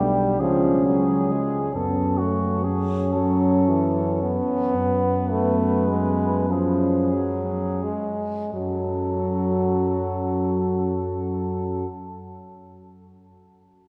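Classical, hymn-like brass band music in F# minor and 6/8, elegiac and melancholic, moves with rubato at a very slow 28-46 BPM and slows from 0.4 to 8.5 seconds, as a distant, dark cornet with light vibrato and a soft attack carries the melody over a mellow French horn section's second line in the background, a clear, close-miked trombone up front and a punchy euphonium in the background on accompaniment, and an up-front tuba on bass, heard in the wet cathedral reverb of a church or concert hall.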